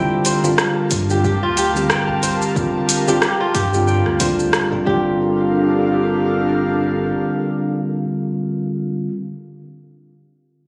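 Captured on a phone in the room and bathed in a lush hall reverb, this hypnotic organic downtempo fragment in G minor moves at 91 BPM with a swung sixteenth feel, as a bell-like electric piano with phaser, sidechain pumping and digital delay sits up front over an airy, breathy pad, a crisp fingerpicked kora plays arpeggios through delay, a round sub bass holds the low end, a very quiet udu and a tape-tinged deep house kit of hi-hat, rim click and shaker add percussion, and a deep electronic kick sits in the background from 0.9 s until 5.0 s, over a Gm9 chord.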